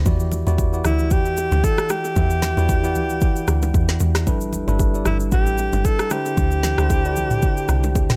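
Amapiano with a deep, soulful mood, this short excerpt moves at 114 BPM in 4/4 with a lightly swung sixteenth-note feel in E minor, tuned slightly below standard pitch. A deep log drum bass anchors the groove with round, percussive, dark hits that have a fast attack and decay, sitting low from G1 to E2. An electronic afro-pop drum kit sits up front with a deep kick, a woody snare, rim clicks, shaker and toms, while congas and bongos played with hard hands stay close and dry in the background. A clean tine electric piano, heard as if through its built-in speakers, carries the harmony through Em7, G6 and D7sus4. From 0.9 seconds a breathy alto saxophone takes the solo melody between E4 and A4, intimate and whispered in tone, with vibrato, scooped notes and a tape echo trailing behind it, all set in a digital ambience.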